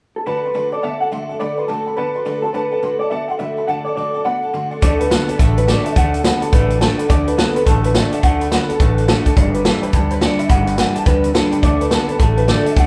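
Recorded live in one large room with moderate studio reverb, this upbeat, rowdy rockabilly excerpt swings at 211 BPM in D major, with a dark, slightly broken-up electric guitar through a small old amp carrying the melody in spring reverb, a twangy, scooped electric guitar playing a riff through a phaser, a bright dreadnought acoustic guitar picking accompaniment and a detuned, jangly honky-tonk upright piano sitting in the background, until at 4.8 s a woody, thumpy pizzicato upright bass and a punchy, up-front vintage drum kit of hi-hat, kick and snare join in.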